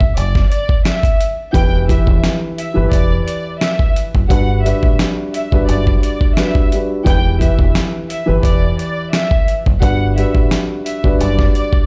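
A gritty, compressed sampler-style drum kit with a thumpy kick and medium-tuned snare opens this moody, reflective boom-bap hip-hop excerpt at 87 BPM in E minor, joined at once by a round, punchy fingered electric bass and, from 0.2 seconds, a lush bowed violin section carrying the melody with vibrato through delay. At 1.5 seconds a dark, boxy grand piano with a cassette-tape tint enters on the accompaniment, moving between Em and Gmaj7 over a lightly swung 16th-note groove. The whole sounds as if played through a big sound system in a bare room.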